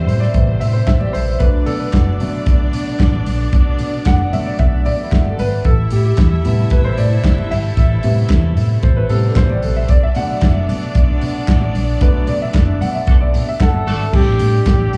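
Glamorous and celebratory, this disco passage is cut from a longer piece and heard as a live gig through the venue's PA, with club ambience and light reverb. A warm concert grand piano carries the accompaniment and takes the lead as a solo, its intimate tone showing audible action noise and deep bass, while a rich, lush string section plays a smooth second line from a distance. A muted French horn section holds sustained chords in the background, nasal and metallic. Up front, a dark, round, punchy hollow-body electric bass sits beside a lo-fi soul drum kit of tight kick, medium-tuned snare, hi-hat, handclaps and a crash with dark cymbals, with very quiet, high-tuned congas adding damped, soft-handed touches. The band hits an accent from 12.0 seconds, a clear, vintage horn section punches in tight stabs with octave doubling at 13.1 seconds, and a breathy, whispered flugelhorn enters with the melody at 13.6 seconds, its soft attack and scooped notes bringing a mellow close. 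The piano, strings, stabbing horns and flugelhorn all carry a slapback echo.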